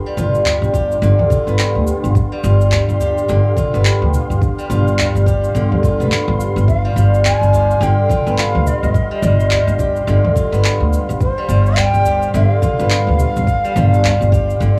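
A hypnotic, mystical stretch of organic downtempo opens on a smooth, detuned sawtooth pad holding a G7sus4 chord with chorus and sidechain pumping, beside an up-front, silvery steel-string zither ringing out fingerpicked arpeggios through tape echo; both carry cassette grain and plate reverb. A woody, thumpy pizzicato upright bass on gut strings, a layered deep house kit of handclaps, shaker and toms, a very quiet close udu and a soft, overdriven electronic kick settle into a swung 4/4 groove. At 6.7 seconds a breathy, bright bamboo bansuri enters with expressive vibrato, its melody steeped in analog delay, cassette texture and plate reverb, while the whole piece sits in a small, homely room.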